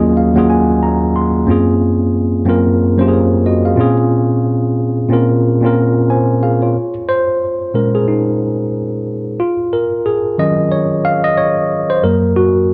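The rhythm sits in a relaxed 4/4 with a lazy swing on the sixteenths, giving this short R&B fragment a soulful, introspective sway. A lone tine electric piano carries everything, its tone worn and slightly out of tune, lightly overdriven and heard through its built-in speakers, placed up front in the mix. It opens with a fill over an Ebm11 chord before settling onto Gbmaj9#11 at 1.5 seconds and then Bbm9, ranging from a deep low register up into bright upper notes. At 6.7 seconds the piano moves into a solo passage over Bbm11 and Ebm7, arriving on a plain Gb chord near the close. A moderate plate reverb with a long tail surrounds the instrument, and the production stays dark and warm throughout.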